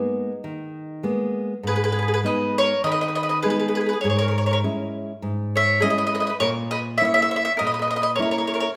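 A picked mandolin with a woody, double-string tone carries the melody up front in this wistful, romantic Italian serenade, a short fragment of a longer piece in G# minor. A second mandolin with a rounder timbre plays a supporting line beneath it, and a bright, fingerpicked classical nylon-string guitar provides the accompaniment, also sitting close to the listener. All three parts play together throughout, at a moderate 101 BPM in 4/4 with a light swing on the eighth notes. The harmony opens on G#madd9, then settles into G#m at 1.7 seconds before moving through C#m/G# and closing on A#dim. A wet recital-hall reverb surrounds the trio, lending the intimate folk setting a spacious, lingering glow.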